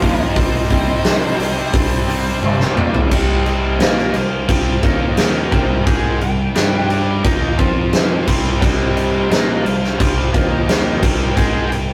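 Aggressive, menacing hard rock in C minor at 87 BPM, cut from a longer piece. A huge, up-front arena drum kit with a fat snare and punchy kick drives the track. Background riffs come from a bright, tight distorted guitar and a cranked stack guitar, with a barely audible dark, double-tracked overdriven guitar beneath them. A growling, punchy picked bass sits underneath. A dark octave-fuzz line sounds only until 2.4 s, and a drum fill runs from 2.4 to 3.1 s. A lo-fi lead guitar through a small cranked amp carries the melody from the start and takes a solo at 3.1 s, all inside a rough rehearsal-room recording with moderate stone-room reverb.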